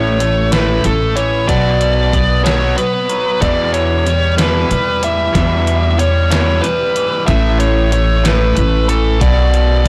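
Cool and moody, this short indie rock passage moves in a steady 6/8, cut from a longer piece. Up front, a dark, nasal lead guitar with a parked wah and overdrive carries the melody, while a pizzicato upright bass sits equally forward with a woody, growly tone from its steel strings. Two overdriven electric guitars share the riff beneath: one biting and warm, touched with subtle chorus and tape echo, the other bright and picked. A detuned 8-bit drum machine joins at 0.2 s with a thumpy kick, medium-tuned snare and hi-hat, its sampler-style sound tape-tinged and re-recorded in a small room. The harmony moves from A through Bm to a long stretch on Em, then A5 and back to Bm, and the recording itself is blown-out and overdriven with light reverb.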